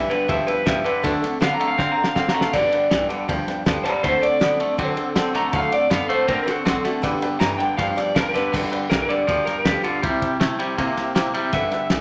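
Rowdy and rollicking, this rockabilly fragment drives along at 160 BPM in a straight 4/4 in G major, with a bright, slightly broken-up, lo-fi electric guitar up front carrying the melody in a solo that runs until 8.5 s, beside a clean, twangy electric guitar riff. A dry, cloth-damped drum kit with a fat snare, tight kick and dark cymbals sits close and adds a fill at 1.8 s, while a full-bodied steel-string acoustic guitar, a mellow upright piano with long sustain and a woody, thumpy pizzicato upright bass fill out the background. A moderate large-studio reverb surrounds the band as the chords move between G and D7 before shifting to C at 10.0 s.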